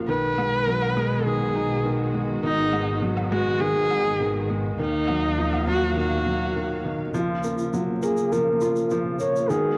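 Hopeful and tender, this excerpt of piano and strings electronica moves at 102 BPM in F# major, with a felt-muted upright piano riff sitting up front, soft and intimate with audible action noise and touched by cassette tape and analog delay, while a boxy solo viola sings the bowed melody with vibrato through a low-pass filter. Behind them a lush symphonic string section holds sustained chords, a sul tasto double bass section floats beneath until 7.1 seconds, and an airy woodblock and shaker keep a light pulse. The chords move from B6 through G#m7 and D#madd9 to F#maj7, and from 7.1 seconds a build-up arrives with a filter sweep on the string section, all in a small room with light reverb and the character of a home cassette recording.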